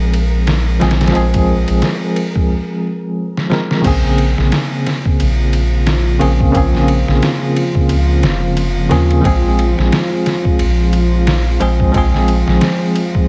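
A swung 89 BPM trip hop groove in Bb minor, cut from a longer piece, sets muffled, pitched-down sampler drums with a thumpy kick against a round, tube-saturated dub sub bass and a bell-like tine electric piano with tremolo and tape echo that carries a filter sweep through a break from 2.5 seconds and a drum fill near 3.3 seconds, while a flickering, grainy texture drops out at 2.5 seconds and a deep, detuned ambient pad with chorus enters at 4.9 seconds, all over vinyl crackle in a melancholic, hypnotic haze.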